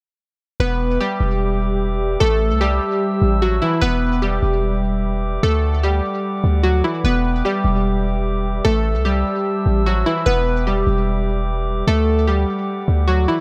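The recording sits in a studio ambience, with the keys and bass placed up front, in a short cut from a longer piece. It is a hard-hitting, menacing trap beat in a half-time feel, built on a loop that moves from Em7 to Am, back to Em7 and then to D, playing twice. Digital keys carry the melody from 0.6 seconds, their glassy sine and triangle tones wave-folded and filtered, with fast, decaying notes thickened by chorus and a digital delay. Underneath, a deep, boomy 808-style bass with a sine core and a noise layer hits with a sharp attack and decays, sitting prominently. High above, a glass harmonica holds sustained chords at a lower level, its pure, ethereal tone swelling in slowly with a smooth, airy quality. All three parts play together from 0.6 seconds until the cut, around 13.4 seconds.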